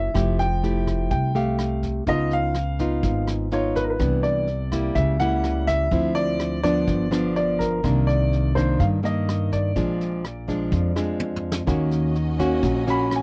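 An up-front, fingerpicked nylon-string guitar carries this smooth, wistful bossa nova, with a grand piano singing the melody over woody pizzicato upright bass and a vintage brush kit that has a fat snare, punchy kick and rolled-off top. After a drum fill at 11.2 seconds, the piano takes a solo at 11.7 seconds as a distant, lush string section enters with expressive vibrato and portamento on sustained chords. The dry, close sound recalls a 1970s studio, and the recording is cut from a longer piece.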